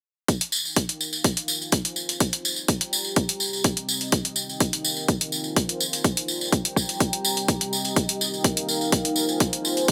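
Piano house with a feel-good, joyful mood, cut from a longer piece. From 0.3 s a punchy, layered electronic kick with a high-pass filter, a tape-warm analog hi-hat and an acoustic tambourine with a small-room character all sit up front in a dry mix. A deep, moody detuned sawtooth pad with a sub octave, chorus, built-in reverb and sidechain pumping fades in from 0.7 s, its slow attack and long release carrying an Eb, Fm7, Gm7, Cm7 progression in a dark, sustained layer beneath the drums.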